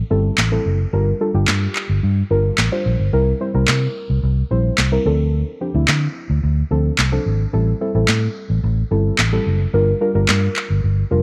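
A punchy, round, foam-muted vintage electric bass drives this confident dance-pop excerpt at 109 BPM in D minor alongside a deep, nasal chord stab with chorus cycling through Am7, Gm7, C7 and Dm7, while overdriven electronic handclaps and a sharp snare enter at 0.4 seconds under light reverb.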